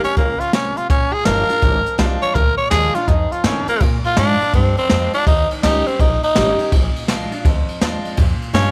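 A raspy, growling tenor saxophone sits up front with tape echo and light vibrato, carrying the melody before taking a solo at 3.8 seconds in this rowdy, retro rockabilly piece in Bb mixolydian, swinging at 165 BPM in 4/4. Beneath it, a bright picked steel-string acoustic guitar provides accompaniment as the harmony moves through Eb7, Bb7 and F7, while a woody, thumpy pizzicato upright bass on gut strings anchors the low end. A jazz kit played with brushes adds dark cymbals and a boomy kick, all within a small room's ambience.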